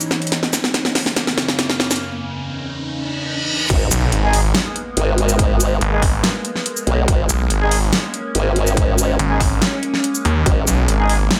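A punchy, tape-warm mix opens this aggressive, heavy half-time wobble dubstep excerpt in G# minor at 142 BPM, where an evolving, phaser-washed wavetable pad and a dubstep kit with a huge snare and metallic hats build with a fill, riser and reverse cymbal until the drop at 3.7 s brings in a punchy electronic kick, a bright formant-sweep wobble bass, a growling, detuned saw bass with a moving notch, and soft, vintage brass ensemble stabs with digital delay, as an impact sounds in the background.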